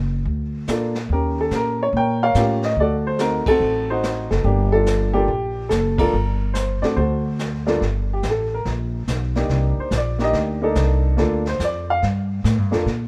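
Swinging and late-night, this G minor jazz piano trio moves at 143 BPM in 4/4 with a swung eighth-note feel. An up-front upright bass with a woody, pizzicato tone opens the passage, joined by a vintage brush kit with dark cymbals, a punchy kick and a rolled-off top, sitting back in the mix. A warm, open baby grand carries the melody over chords such as a rootless Gm9, Eb7 and D7b9, with band accents at 3.4 and 5.9 seconds before the piano takes a solo from 7.8 seconds, all in a small room with the rough feel of a home demo, cut from a longer piece.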